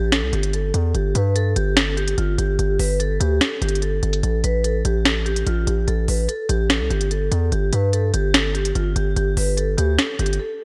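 A vibraphone played with medium mallets opens this melancholic, eerie trap excerpt together with a distorted 808-style bass, and a trap drum kit joins at 0.1 seconds. The tempo is 146 BPM in 4/4 with a half-time feel. The vibraphone carries the melody between F4 and B4, its metallic, ringing tone shaped by a fast motor vibrato, a low-pass filter and delay, and it sits close-miked and full in the mix. Underneath, the aggressive, heavy 808 bass runs from G1 to G2 with a sine body, a noise layer, a fast attack and a decaying tail, placed up front alongside electronic drums with a sharp snare and crisp hi-hats. The harmony moves from A5 to Gsus2, drops out of any defined chord for a stretch, then returns to Gsus2, all within bright 1980s-style digital production and light reverb. A break arrives at 10.4 seconds as the bass and drums stop, leaving the vibraphone to ring until 10.6 seconds.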